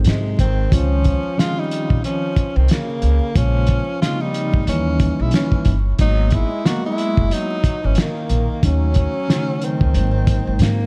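A dark tenor saxophone with subtone, vibrato and analog delay carries the melody over a bright trombone second line in the background, a tine electric piano with medium tremolo, a woody pizzicato upright bass and a muffled, cloth-damped drum kit with a fat snare, in a cool, nocturnal jazz-hop groove at 91 BPM with swung 16ths, light reverb and vinyl crackle.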